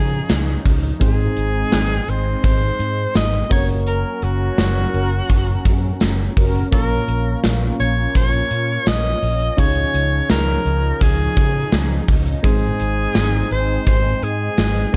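A moody, dramatic slice of 1980s-style pop in a straight 4/4, cut from a longer piece and set in a small room. A clear alto saxophone carries the melody with vibrato and scooped notes, its punchy tone trailed by delay. Beneath it, soft electric-piano-like synth keys warble gently in the background through chorus, while a swirling, evolving analog pad sustains chords through phaser and chorus. A dark, round fingered electric bass sits under the harmony, and from 0.3 s a gated 80s drum kit, up front with a punchy kick and a medium-tuned snare in a bright stone room, drives the groove alongside a very quiet, jingly tambourine. A band accent lands around 3.9 s, and mellow, brassy synth stabs with a filter sweep appear between 4.9 and 6.7 s as the chords move from Dbadd9 through Ab, Gb and Bbm.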